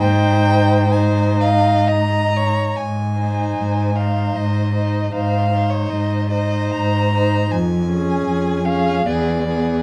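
This short fragment from a slow, romantic string quartet movement begins with all four players sounding together in Ab major, unfolding a warm, lyrical mood in 3/4 at around 60-80 BPM with a flexible, rubato feel. The first violin carries the melody in a rich, smooth, even voice with vibrato, while the second violin adds a focused second line just beneath it. The viola's accompaniment sits close and expressive, with soft attacks and gentle portamento. The cello's clear, vibrato-touched bass is the most prominent voice, though it carries a distant quality. After a brief opening phrase, a new passage begins at 2.8 seconds, and the harmony moves from Ab to Db/F at 7.5 seconds before reaching an E7 at 9.1 seconds. A moderate large-studio reverb and a dark, warm production give the ensemble a cushioned, intimate glow.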